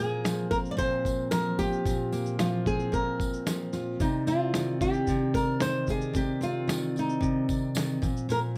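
A fingerpicked flamenco guitar with fresh strings and plate reverb carries the melody up front from the start, over a picked jumbo steel-string acoustic with audible finger squeak and a clean tonewheel organ holding sustained chords in the background through a slow rotary speaker. At 0.3 seconds a gritty, tape-warm sampler-style soul kit with a thumpy kick, medium-tuned snare and shaker joins alongside a jingly, close and dry tambourine, setting a straight 112 BPM pulse in 4/4. This reflective, tender acoustic pop fragment in C minor moves from Bbsus2 to Cmadd9 and back, all within a light reverb.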